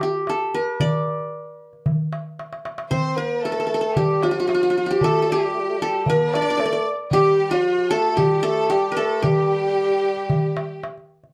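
A live ensemble plays together in one studio room, with a short, wet ambience around the sound. This brief clip of Arabic maqam music has a hypnotic, soulful mood in a steady, straight four-beat feel. The qanun carries the melody up front from the start, its triple strings plucked with fingerpicks to give a bright-edged acoustic tone. Beside it, a small, high darbuka with a clay shell and natural skin is played close with soft hands, and a drum fill at 2.4 seconds leads into the fuller texture. At 2.9 seconds a clear, intensely bowed chamber violin section with vibrato and a mellow, classical-style solo bassoon with light vibrato and a smooth top join as second lines, sitting behind the qanun in the mix.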